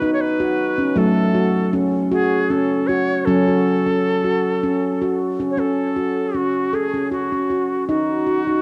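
Gentle and hypnotic, this short excerpt of meditative world music moves at 78 BPM in a lilting 3/4 with a light swing, set in an F# kumoi scale. A handpan carries the harmony in arpeggios throughout, its stainless-steel tone ringing and full, played with sharp finger strokes and captured close-miked, dry and up front, with cassette tape color and tape echo. Over it, a Native American-style cedar flute sings the melody, airy and reedy with a soft attack and vibrato, sitting up front yet a touch quieter than the handpan, treated with cassette tape, plate reverb and tape echo. The harmony settles from B into a long stretch of F# minor, and the passage shifts into a new section at 5.6 seconds before returning to a rootless B near 7.9 seconds. The whole piece has the intimate feel of a home cassette recording in a short, wet studio room.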